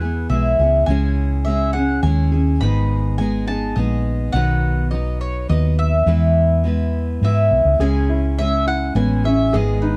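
Gentle and warm, this short cut from a longer acoustic folk piece moves at 104 BPM in a straight 3/4 lilt, with a dark overall production and light reverb. A round, double-strung mandolin carries the melody up front, while a full-bodied dreadnought steel-string guitar picks the accompaniment beneath it, a touch of finger squeak audible in its playing. Anchoring the low end, a hollow-body short-scale electric bass, fingered and amped, sounds punchy and prominent, sitting a little louder than the other parts. The harmony turns through E, C#m, G#m and B before returning to E, and when the passage repeats at 7.8 seconds a clear, woody upright piano enters with short-sustained vintage arpeggios, lying softly beneath the trio until the cut ends at 10.0 seconds.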